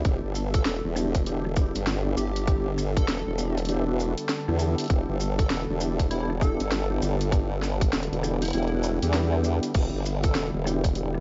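Glitch hop with a funky, playful swing, built on a single Em7 chord. Its tight, up-front electronic kick and a layered drum-and-bass kit with a cracking snare, hi-hat, rim click and crash sit in studio reverb alongside a wobbling, detuned formant-sweep bass, while a mellow, flute-like tonewheel organ plays stabs through slow rotary speaker, chorus vibrato, digital delay and sidechain pumping. A warbling vintage pad with 12-bit sampler grit holds sustained chords in the background alongside grainy maracas, and a punchy, catchy plucky unison lead carries the melody from 0.5 to 10.5 seconds with digital delay, all over a bed of vinyl crackle in this excerpt from a longer piece.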